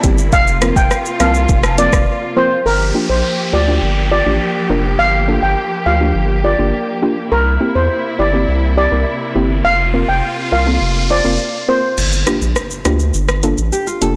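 Dancehall with a sultry, bouncy feel, cut from a longer piece: a mellow steel pan lead with tape echo floats over a soft, round pluck with chorus, veiled con sordino strings and a thick, saturated sub bass, while an electronic afro-pop kit with metallic hats plays only at the start and again from 12.0 seconds, and a distant cabasa and woodblock sound briefly at the opening. An electronic riser, a downlifter and an impact build tension, with the riser from 8.9 seconds and the impact landing at 12.0 seconds as the kick drops out. A fingerpicked nylon-string guitar appears in the final moments, and the whole recording has a blown-out, overdriven sound with light studio reverb.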